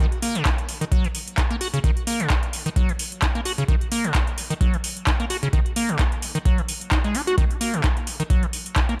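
The recording is dry and close, with a raw, driving acid house energy in a nine-second cut from a longer piece. A squelchy, resonant acid bass line opens at 0.0 s, its square-wave tone smooth yet bright, with a fast attack, a decaying tail and an audible filter sweep, colored by chorus, overdrive and tape echo. At 0.1 s a booming analog drum machine joins with handclaps and metallic hi-hats, overdriven and re-recorded in a small room. A deep, overdriven electronic kick drum lands at 0.5 s and sits up front beside the bass riff, giving the groove its weight. The 4/4 pulse carries a light swing on the sixteenths, lending the riff a gritty, loose bounce.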